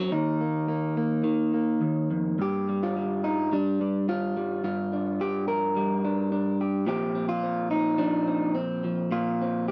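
A lone electric guitar opens this short folk fragment, sounding through a small old amp with a dark, slightly broken-up tone that sits up front in the mix. The mood is gentle and peaceful, moving at 107 BPM in a straight 4/4. The picked guitar carries the whole piece by itself, ranging from Eb2 up to Bb4, with a compressed sound. It begins on an Ebsus2 chord, shifts to Gm7 at 2.4 seconds as a new section starts, and settles on Bbsus2 at 6.9 seconds. A moderate studio ambience surrounds the playing, lending a touch of room to the performance before this portion of a longer piece ends at 9.7 seconds.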